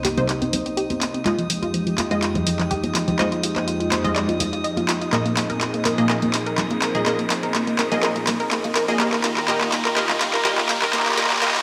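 A straight, driving 4/4 pulse comes from an up-front, layered electronic pop kit of handclaps and warm hi-hats, with ringing acoustic congas sitting close but in the background, as this emotional progressive house build-up rides a drum fill and filter sweeps over Cm7, Fm7, Bb7sus4 and Eb. A thick, warbling vintage pad holds sustained chords under chorus while two punchy detuned sawtooth plucks play above it, one spinning wave-folded arpeggios through delay and the other firing bright stabs through phaser, cassette tape and delay, both shaped by filter sweeps. A calm, glassy texture of drifting sine overtones glows softly behind them, and a very quiet riser creeps in at 3.5 seconds to lift the tension.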